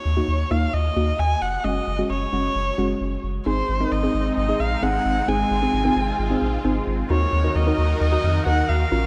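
An intimate, boxy erhu with vibrato and tape echo carries the melody over a warbling, lo-fi pluck, a round, deep analog bass and, from 3.5 s, a lush, detuned unison pad with chorus and phaser, in this bright yet wistful 132 BPM pop fragment in Ab mixolydian, all soaked in a dreamy plate reverb.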